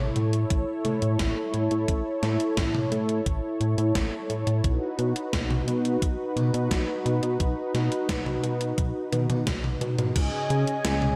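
A glossy, dark chorused synth bass with a tube-saturated pulse-and-sawtooth pluck underpins this moody, nostalgic synthwave excerpt at 87 BPM, set against a smooth, detuned sawtooth pad in sustained chords, a thumpy sampler-style electronic kick, and a gated 80s digital drum machine with a gated-reverb snare, hi-hat, crash and toms that rolls into a fill from 9.1 s, all moving from A to B and settling on C#sus2 in a dreamy mix soaked in plate reverb.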